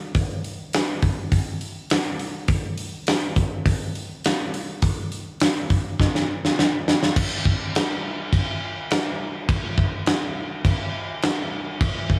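Dreamy and wistful in tone, this straight-feel rock excerpt at 103 BPM in 4/4 features a big acoustic drum kit playing from 0.1 seconds, with crash cymbal, hi-hat, punchy kick and a medium-tuned snare set up front. The kit has a mid-forward, rolled-off character and the sense of a big room, yet sits dry with little reverb. A drum fill from 6.0 to 7.2 seconds carries the opening section into the next, which runs until 12.2 seconds.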